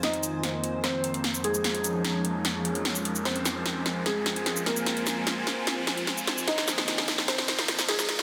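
This heavy, chaotic wobble dubstep excerpt opens straight into a build-up at 149 BPM in half-time F minor: a soft, felt-muted upright piano with audible action noise and digital delay carries the melody over sustained Fm, Bbm7/F and Cm7/F chords from a lush, warbling detuned-saw unison pad with chorus, and a blurred, evolving granular cloud pad adds texture, while a big-room dance drum kit with a punchy snare and metallic hats plays a fill up front, an electronic riser sits in the background and a filter sweep runs through the dense, heavily limited mix.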